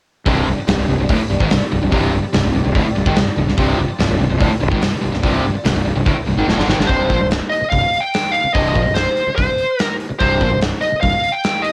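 Menacing, driving hard rock in C minor at 145 BPM, cut from a longer piece and captured as a home cassette recording in a small room, where a gated 80s drum kit with a tight kick and medium-tuned snare sits up front beside a fuzz-drenched fingered bass, while a cranked stack guitar, a hollow-body semi-hollow guitar and a very quiet double-tracked high-gain guitar play bright picked riffs in the background over a faint, flute-like detuned pad, until a drum fill hands off at 6.9 seconds to a dark, smooth overdriven lead guitar melody that carries on to 11.7 seconds.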